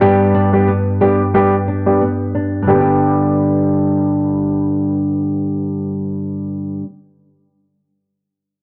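The recording sounds dry and gritty, with transformer saturation and a cassette-tape character, lifted by only a light touch of studio reverb. This short, sunny, summery dancehall cut has a gently swung 16th-note lilt. A concert grand piano with a deep bass and natural tone sits up front, softened by a low-pass filter as it plays accompaniment in its middle register. Beside it, a small, acoustic nylon-string guitar is fingerpicked in arpeggios, also close and mellowed by a low-pass filter. A filter sweep colours the opening passage until 2.7 s, after which a second passage runs to 5.3 s, with the guitar ringing on just past the piano to close at 6.9 s.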